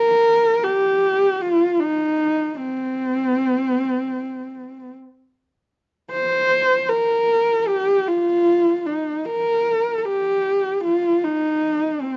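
Recorded outdoors with a dry sound and a muted top end, this vast, windswept 12.2-second fragment of Mongolian folk music features one horsehead fiddle played solo and up front, its bowed horsehair strings giving a husky, boxy tone with a soft attack, expressive vibrato and sliding portamento across a range from C4 to C5.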